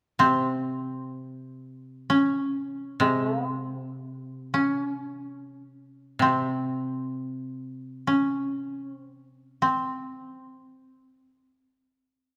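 Calm and austere, this short passage of Japanese traditional chamber music unfolds in free time, cut from a longer piece. Two kotos, both played with fingerpicks, carry the music. One koto sings the melody within a narrow span from C4 to Db4, its tone mellow and woody, dry and up front. A second koto supplies accompaniment on a low C3, sounding warm and sitting beneath the melody before it stops at 9.6 seconds, leaving the lead koto alone until 12.2 seconds. A moderate recital hall reverb surrounds the pair, lending the spare lines a sense of space.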